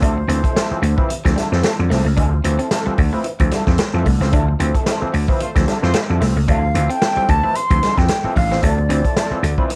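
A growly, punchy slap bass sits up front in this sly, hypnotic funk excerpt, paired with a vintage drum kit whose tight kick, medium-tuned snare and hi-hat sound natural in a studio room with a rolled-off top. Around them, a dark, slightly broken-up electric guitar plays fingered accompaniment through a wah, while a clean, compressed, picked guitar riff sits in the background with analog chorus. An overdriven, stringy clav adds percussive stabs through an envelope-filtered auto-wah and a combo amp. The band hits an accent at 4.3 s, and a distant, roomy horn section slips in briefly as a second line at 5.4 s. A breathy silver concert flute with a crisp, chiffy attack, lifted highs and unsteady vibrato carries the melody in a brief opening phrase and returns at 6.5 s. Studio reverb and a cassette-tape home-recording character color the piece, which stays on a single Dm9 harmony throughout.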